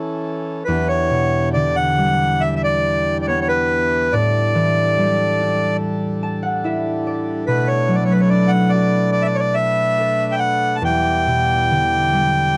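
A hollow, reedy accordion carries the melody up front in this haunting, longing Celtic slow air in E dorian, drifting in rubato around 70 BPM over ringing, fingerpicked concert harp accompaniment that adds a fill at 5.8 seconds, while a breathing, nasal hand-pumped harmonium holds sustained chords underneath in a dry, close 1970s-style studio sound touched with light reverb.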